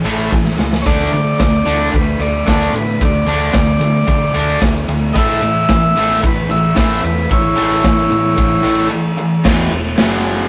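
A bright, double-tracked guitar with picked overdrive drives this swaggering, raw garage rock excerpt at 112 BPM in a straight 4/4, moving from A to D5 and back before landing on E5. Up front beside it, a punchy, gritty drum kit with a medium-tuned snare fills a bright stone room and opens with a quick fill, while a dark, round hollow-body bass sits underneath. A buzzy vintage combo organ carries the melody from 0.8 to 8.9 seconds, bathed in spring reverb and slapback echo, ahead of a short break, all captured as a rough rehearsal-room recording with light reverb and saturation.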